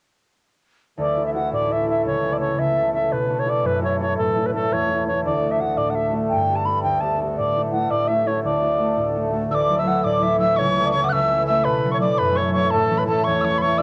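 A 6/8 jig at 112 BPM sets a lively, rollicking pace for this Celtic folk piece in D major, where a bright, reedy baroque flute with vibrato and a cassette-tape tinge carries the melody over ringing, thumb-plucked concert harp and a full, rich accordion drone, joined at 9.5 seconds by a breathy tin whistle with tongued chiff on a second line, the whole set in light studio reverb on a homespun cassette recording.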